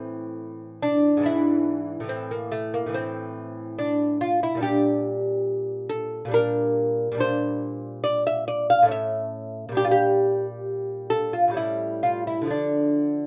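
In a rubato triple metre around 70 BPM, this solemn, introspective baroque-style classical dance excerpt features a solo lute, bright and delicate with fingerpicked nylon double strings and some octave-doubled courses, sitting up front across a range from G#2 to F5, moving from A minor through E7/G# and a turn to A major, Gm/Bb and A7 before settling on D minor near 12.5 seconds, all in a rough home demo mix with moderate studio reverb.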